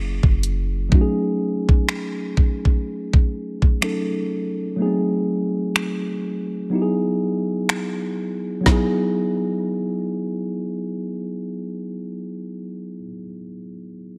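A slow 62 BPM groove in 4/4, with a 16th-note swing, carries this romantic, tender contemporary R&B excerpt in E major. The smooth, produced drum kit enters at 0.2 seconds with a knocking kick, a woody snare, finger snaps and tape-warm hi-hats, sitting up front until it drops out at 8.9 seconds. A deep, boomy 808-style bass with a clean, sine-like tone and a fast attack sounds a single decaying F#1 at the opening, over within the first 0.9 seconds. The mellow tine electric piano plays throughout, its clean voice heard through built-in speakers and held close, moving from F#7 through F#m69 and G#7b9 to a resolving Emaj7. A digital ambience surrounds the mix. The piano carries the closing moments alone as the fragment shifts into its second section, cut from a longer piece.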